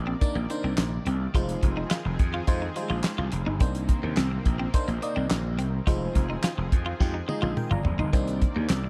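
A lush, warbling sawtooth pad sits in the background while a growly, overdriven slap bass punches up front from the start of this danceable early-eighties boogie funk excerpt in C minor at 106 BPM, moving between Cm9 and Fm7. A twangy, scooped clean guitar riff, a glassy FM electric piano with a bell-like attack, chorus and phaser, and a dry, damped 70s kit with a fat snare, tight kick, handclaps, hi-hat and toms soon join in. The drums play a fill from 7.0 to 8.1 seconds, all within a small room reverb.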